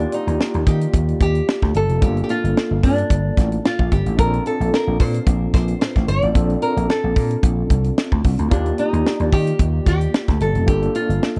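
A dry, close 1970s-style studio sound in a small room frames this breezy, urban slice of polished 1980s jazz-funk pop, cut from a longer piece and moving at 111 BPM in Bb major with a light sixteenth-note swing. Up front, a tight funk kit with a high-tuned snare and a round, punchy, amped slap bass drive the groove, while a bright, barky electric piano, gritty through a combo amp with medium tremolo and lush chorus, carries the harmony over chords such as Ebmaj7, Gm9 and Bbmaj9. A small, fingerpicked nylon-string guitar plays the melody on top across the full 11.4 seconds.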